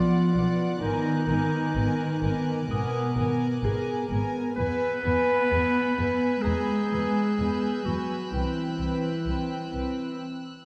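A dark, hall-drenched suspense score cue with an eerie, uneasy mood opens on a huge but barely audible impact, as soft-attack sul tasto violins float a melody over a bright, present clarinet line, a second violin line, pure viola accompaniment, intimate cello and woody, distant double basses entering at 0.3 s, while a ringing harp in the background and a high violin texture linger through chords moving from Bm to Cmaj7 before a brief break at 10.2 s.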